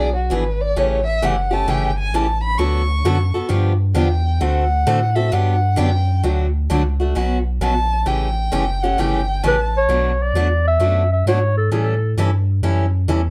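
A lively, charming swing at 132 BPM in 4/4 opens this excerpt of acoustic jazz manouche, with a bright, boxy picked steel-string guitar and a round, deep sub bass driving through chords like E7/B, A7, D6 and G7 beneath a dark, woody bowed violin that takes the solo from 0.0 to 9.9 seconds with vibrato and portamento. At 9.5 seconds a mellow, vintage-toned clarinet enters with subtone and slapback echo for a brief melody over Bm7 and A7, as the violin drops out. The production is dark, with light reverb.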